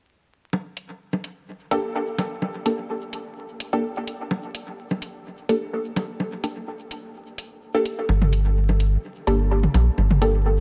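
Hazy and meditative, this dub techno fragment is cut from a longer piece and moves in a steady four with a gentle swing on the sixteenths. Electronic bongos and toms open at 0.5 seconds, layered and up front in a small room with dub echo trailing behind them, and a metallic, tape-warm electronic hi-hat joins just after, softened by a low-pass filter. A muted, detuned sawtooth chord stab arrives at 1.7 seconds with a quick filter pluck and short decay, thickened by chorus, phaser and dub echo, while a filter sweep moves over it through the whole passage. Near the close, at 8.1 seconds, a deep, round sub bass enters up front with a soft, sustained tone. A layer of vinyl crackle and light digital reverb gives the recording a dusty, enveloping air.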